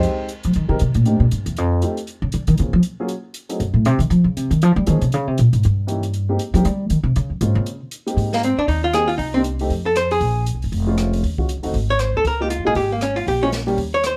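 Swinging at a brisk 236 BPM in 4/4, this sophisticated small-group swing and bop excerpt in Ab major opens on a woody, up-front pizzicato upright bass solo over mellow, vintage upright piano chords and an airy, small-room drum kit with a boomy kick, until a clean, hollow-body archtop guitar takes the melody at 8.3 seconds, set in light reverb.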